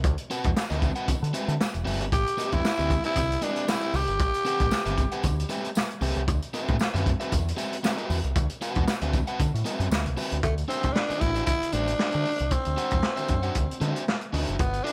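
A swung sixteenth-note funk groove in 4/4 rides on a crunchy, saturated breakbeat kit with a punchy kick and a deep, round dub bass, while an overdriven guitar with spring and plate reverb, distant soft-handed congas and a jingly background tambourine keep the cool, hypnotic pulse going, and a growling, raspy tenor saxophone cuts in up front at 2.1 seconds and returns at 10.4 seconds over rootless minor-ninth and dominant thirteenth harmony.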